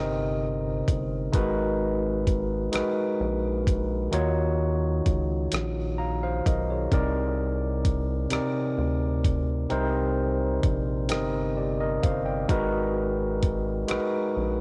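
A barky, overdriven tine electric piano sits up front through a combo amp with cassette-tape grit, moving through Cm7, Abm9, Ebm9 and Cm9 in this late-night, sultry slow six-eight R&B excerpt in C minor at 43 BPM. Beneath it, a rubbery, hollow square bass with a nasal filter pluck holds the low end, while a compressed, dusty, sampler-style soul drum kit with a thumpy kick, hi-hat and rim click enters at 0.9 seconds. The home cassette recording carries light reverb.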